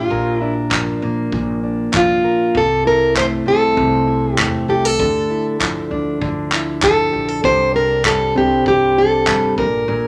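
Set in a moderate large-studio reverb, this reflective, tender acoustic pop fragment pairs two full-bodied, up-front fingerpicked jumbo steel-string guitars, one carrying the melody and one the accompaniment, over a woody, thumpy pizzicato upright bass, while a natural country drum kit with a punchy kick and very quiet, crisp group handclaps join at 0.7 seconds as the harmony moves through Bb, Am/C, Dmadd9 and Csus2.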